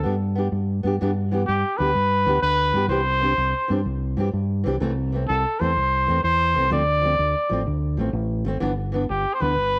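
Highlife guitar band music in 12/8, joyful and carefree, with a warm, lightly vibratoed trumpet carrying the jazz-style solo melody up front with scooped notes, over a dark fingerpicked steel-string acoustic guitar and a round, punchy fingered electric bass, all set in light reverb and studio ambience in this brief cut from a longer piece.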